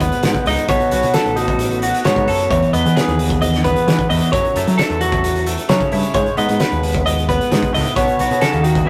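A rough rehearsal-room recording with warm saturation and light reverb frames this bright, intricate snippet of math rock and midwest emo at 132 BPM in a straight 4/4. Two clean, compressed twelve-string electric guitars play throughout, one laying down warm accompaniment through spring reverb while the other, twangy and up front, picks high arpeggios. A growling, overdriven picked bass and a loose indie kit with a fat snare, boomy kick and hi-hat in a pumping room carry the changes from G#madd11 through B9, Emaj7, F#m7 and B13.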